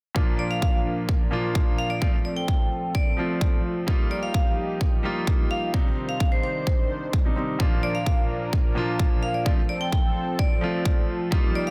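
A straight 4/4 pulse at 129 BPM from a punchy, up-front electronic kick drives this triumphant, anthemic festival progressive house excerpt in Bb major. A concert grand piano with audible action noise and deep bass, and a thick, detuned sawtooth unison pad with chorus, both carry sidechain pumping, while a filter sweep runs over the pad. A bright, metallic vibraphone with fast motor vibrato and dub echo carries the melody over chords moving through Bb, F, Ebadd9 and Cmadd9, and a barely audible riser enters at 11.3 seconds beneath the dense, heavily limited master.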